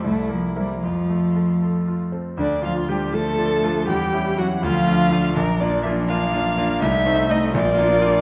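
A dark, reverberant scoring-stage sound surrounds this short cut from a longer classical-period movement for piano quartet in D minor, cheerful and spirited despite the key. It moves quickly in 6/8 at 75-84 dotted-quarter beats per minute, with a rubato feel. Up front, a single rich violin carries the melody with smooth, even vibrato, while a brilliant concert grand piano gives bright, polished accompaniment with deep bass. A clear, more distant cello plays a smooth second line, and a slightly quieter viola enters at 0.6 seconds with a soft attack, vibrato, portamento and expressive shaping. After an opening phrase moving from C7 to F, a new passage begins at 2.4 seconds on D minor and passes through diminished chords before settling on Bb.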